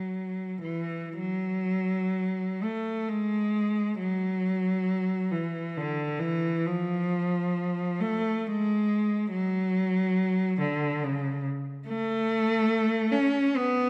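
A lone bowed cello opens the recording, its clear, smooth tone placed up front with vibrato. This is a short classical passage lifted from a longer work for unaccompanied cello, unfolding in a free, rubato three-beat metre. The mood is nostalgic and serene, with the single player holding an even, expressive line within the middle-low register of the instrument. After a brief opening phrase, a new section begins at 1.2 seconds and carries the music through to 13.9 seconds. A moderate reverb, like that of a scoring stage, gives the solo line a sense of space around it.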